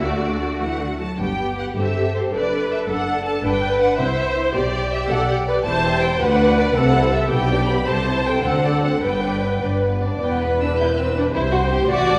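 A quick classical-period movement for string orchestra in G major, this restless, urgent excerpt moves in a rubato 6/8 at 100-111 BPM, with warm, expressive first violins singing the melody with vibrato and a soft attack from a distance, a lush, smooth-topped second violin line beneath, intense violas in accompaniment, close, even cellos and rich double basses set further off sharing the bass, all parts steeped in wet concert-hall reverb heard from further back in the room.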